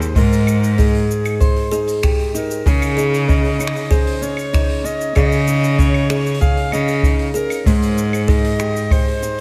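A dreamy, reverb-soaked hall sound frames this delicate folktronica excerpt in Ab major at 96 BPM, where a breathy, softly attacked clarinet sings a jazz-style melody with light vibrato and delay over fingerpicked nylon-string guitar arpeggios, a biting bowed cello bass with light vibrato up front, a boomy up-front kick, brushed jazz kit with cabasa, claves, finger snaps and hi-hat, and a short, woody kalimba line with tape echo in the background, moving from Abmaj7 to Dbsus2 and back by 7.7 seconds.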